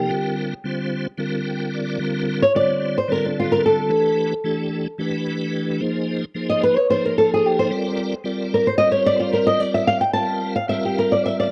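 Jazz in 7/8 with a nocturnal, funky mood, this excerpt features a dark, fingerpicked flamenco guitar carrying the melody up front, soloing throughout over shifting suspended chords. Beneath it, a piping tonewheel organ with key click, chorus vibrato and a slow rotary speaker provides accompaniment and adds a brief fill from 1.2 to 2.0 seconds. The sound is a dry, close 1970s-style studio recording with light reverb.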